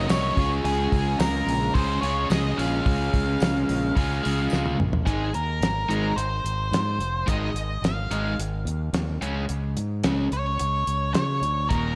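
Classic rock with a confident, driving straight feel, built on a dark octave-fuzz lead guitar carrying the melody with slapback echo over a bright, double-tracked overdriven rhythm guitar riff, a growling fingered bass with overdrive, and a damped 70s drum kit with a fat snare and tight kick, while a jingly tambourine sits in the background until 4.6 seconds, a drum fill leads into a new section at 5.1 seconds, and a moderate scoring-stage reverb gives this excerpt a big arena sound.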